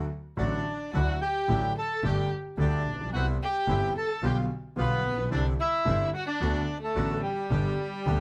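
A nostalgic, passionate tango in G major opens with a warm concert grand piano, its action noise audible, alongside a clear, bowed double bass with vibrato and bright bandoneon stabs carrying a slapback echo from the background, at a rubato 110 BPM in 4/4. At 0.4 seconds a reedy, boxy-sounding second bandoneon steps up front with the melody, joined by a dark violin whose soft attack, vibrato and portamento give its second line an expressive edge. Close, detailed microphones and light reverb keep the sound intimate as the harmony moves from D through Cmaj7 and G7/B before settling on G.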